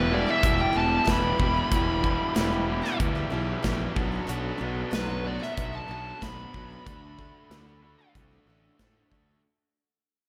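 Brooding and swaggering, this classic rock excerpt in E minor moves at a straight 93 BPM through Em, Bm and D, with a dark, up-front fuzz lead guitar soloing from B4 to B5 over a bright distorted electric guitar riff and a lo-fi overdriven garage guitar in the background, all three carrying slapback echo. A round, fuzzy fingered electric bass and a boxy parlour steel-string acoustic guitar fill out the bottom and middle, while a big rock drum kit with a punchy kick and medium-tuned snare enters at 0.4 s. The whole passage sits in a lush hall reverb with a big arena sound and fades out across its 9.4 seconds.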